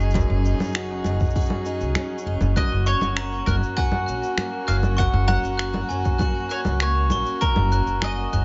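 A softly reverberant, mellow-topped mix frames this pastoral folktronica excerpt in a straight four. A bowed chamber string quartet holds vibrato-rich chords while a bright, boxy, swing-flavoured acoustic guitar picks delayed arpeggios over a growly, up-front pizzicato upright bass, a deep, tape-softened electronic kick and an overdriven electronic layer of shaker, congas and finger snaps. At 2.6 s a picked mandolin with double strings and a touch of 12-bit sampler grit takes the melody, joined by a sparkling, bell-like glockenspiel second line struck with hard plastic mallets, both carrying digital delay.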